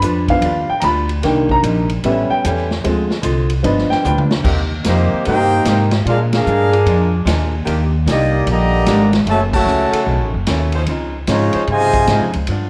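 A swinging 4/4 pulse at 149 BPM drives this brassy big band jazz fragment in C minor, carried by a woody, up-front pizzicato upright bass, a roomy, distant drum kit with dark cymbals and a punchy kick, and a clean, compressed hollow-body archtop guitar tucked in the background. The opening belongs to a short solo from a smooth, vintage-sounding upright piano, which drops out when a drum fill hands off to the horns at 4.4 s. The sections then take over: a clear, close-miked trumpet section carries the melody with light vibrato, a soft-attacked trombone section shapes a tight second line beneath it, and an edgy saxophone section holds sustained chords further back. The full band hits accents at 6.3 and 9.5 s as the harmony moves through Bb7, Ebmaj7, F#m7 and B9 before settling on Dbmaj9. Everything sits in a moderate recital-hall reverb, and a worn, warbling cassette-tape character adds a warbly pitch drift to the whole recording.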